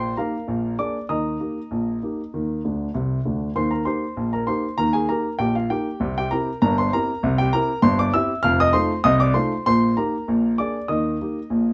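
A solo grand piano, intimate and up front with its action noise audible, plays a cheerful, jaunty ragtime passage in a straight 2/4, spanning F1 to F6 in light reverb, dropping in a fill from 2.6 s before the opening strain repeats at 3.6 s and moves through C7 and F7 back home to Eb in this cut from a longer piece.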